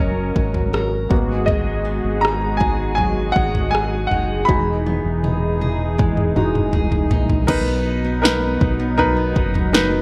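A heartfelt, hopeful pop ballad in B major at 80 BPM, this short excerpt sets a clear, up-front grand piano over a smooth, detuned analog pad with lush chorus, dark full-bodied fingerpicked acoustic guitar arpeggios and a round, punchy electric bass, while an electronic deep house drum kit with a deep kick, overdriven punch and large-room sound enters at 0.4 s and plays a fill from 4.5 s before the chords settle on Bmaj7 at 7.5 s, all carrying a digital ambience with lossy compression artefacts.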